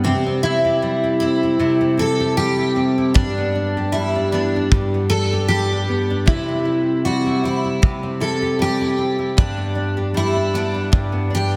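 A gently swung 77 BPM pulse in 4/4 carries this heartfelt, sunny acoustic pop excerpt in G major, where a full-bodied picked jumbo steel-string guitar sings the melody through lush chorus and analog delay over a deep, fingerpicked nylon-string guitar with audible finger squeak and subtle chorus, while a punchy, airy kick drum enters at 3.2 seconds, the harmony moving from C to G at 9.4 seconds inside a dreamy mix soaked in a long hall reverb.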